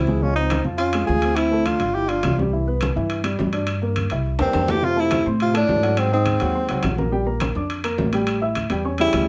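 Afro-Cuban jazz with a sunny, danceable lift, heard as a short cut from a longer piece, where a breathy, subtoned tenor saxophone sings the melody up front with vibrato and scooped notes, shadowed by a veiled, bucket-muted trombone sitting distant in the background on a second line, the two playing together in phrases at 0.0, 4.4 and 9.0 seconds. Underneath, a dark baby grand piano with short sustain comps, and a woody pizzicato upright bass sits prominently in the mix. Ringing congas and metal-shell timbales drive the groove alongside very quiet, band-limited vintage claves, with a drum fill at 4.4 seconds leading into the second section, all set in moderate studio reverb.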